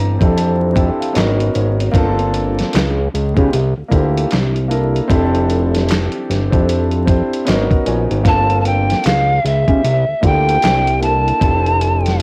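A dusty, gritty sampler-style kit of thumpy kick, snare, hi-hat and handclaps sets a swung 16th-note groove at 76 BPM in 4/4, anchored by a fat, detuned analog bass with transformer saturation and a nasal bite. A deep, long-sustaining grand piano carries the sultry neo-soul chords, moving through Fmaj9, Abm7, Gm7, C#9 and C13 and adding fills, the second at 7.1 seconds. At 8.3 seconds a breathy, wooden pan flute enters with a chiffy, vibrato-laced melody, all set in light reverb with cassette-tape grit and vinyl crackle in this smooth R&B excerpt.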